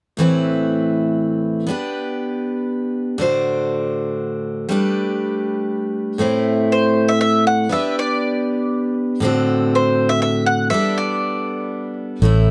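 A bright, full-bodied picked steel-string acoustic guitar opens this haunting, reflective folk excerpt in 3/4 at 120 BPM, playing up front from 0.2 seconds as the accompaniment over chords moving from Amadd9 through G/B and D7/A to Gadd9. At 6.7 seconds a warm bowl-back mandolin enters with a picked, double-string melody, and a direct fingered electric bass appears briefly on a low A at 12.2 seconds. The sound is dry and close, like a 1970s studio recording, with little reverb.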